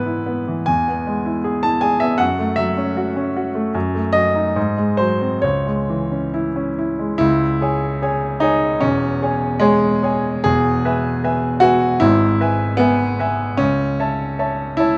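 Close, detailed microphones and a light reverb place a smooth, vintage-toned grand piano up front, heard in a clear and intimate way. This is a romantic character piece for solo piano, lyrical and warm in mood, moving in a gentle 2/4 with a freely breathing rubato. The piano carries everything alone across the whole 15.0 seconds, ranging from deep E1 in the bass up to A5. The opening phrase drifts through E, F#m7 and a diminished chord before G#7 resolves to C#m at 5.4 seconds. A new section begins at 7.2 seconds, where the harmony settles on C#m/E and E before turning toward A/C#, as this passage cut from a longer piece flows onward.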